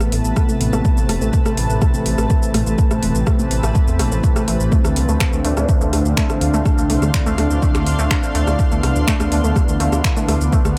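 Dramatic and hypnotic, this melodic techno excerpt moves at 124 BPM in 4/4 over Amadd9 shifting to Dm7 at 4.7 s, driven by an overdriven, up-front electronic kick and a deep house kit of finger snaps, metallic hats, rim click and shaker that pump with the sidechain. A menacing, detuned saw bass pumps beneath a lush, bright unison pad, a cloudy granular texture pad and a very quiet analog drone, while a warbling, lo-fi pluck plays arpeggios on A3 through chorus and diffuse ambient delay. From 5.4 to 9.4 s, fat, brassy analog synth stabs sit in the background, all within a light reverb.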